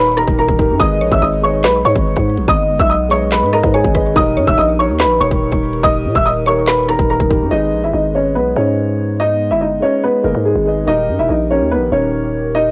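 Ominous and cold, this half-time drill cut at 143 BPM in G# harmonic minor puts a dark, woody upright piano up front for the melody, its action noise audible, over a boxy concert grand with cassette tape colouring, a warbling, detuned tape-like pad sustaining chords very quietly, and a very quiet, round FM mallet-like pluck as a second line until 7.1 s. A growling, buzzy 808-style bass anchors the low end throughout, while an electronic drill kit with a hard-clipped kick, crisp hats, snare, rim clicks and handclaps drives the groove before dropping out at 7.4 s. The light reverb and lo-fi home-cassette sound lend the excerpt an intimate, nostalgic chill as it moves between G#m and D#.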